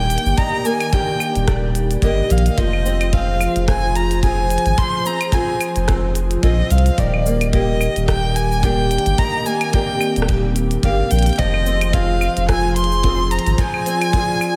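A dreamy, reverb-soaked mix set in a churchlike space frames this playful folktronica passage, cut from a longer piece and swinging gently on its sixteenths. A rich, focused bowed violin carries the melody up front with vibrato and tape echo, over a warbling, nostalgic lo-fi pad of detuned, ring-modulated sustained chords and a small fingerpicked nylon-string guitar playing arpeggios through ensemble chorus and echo. Underneath, a round sine sub bass sits up front until 13.5 s, joined by a tight, airy acoustic kick and a minimal electronic kit of clicky hi-hat, claves, rim click and shaker.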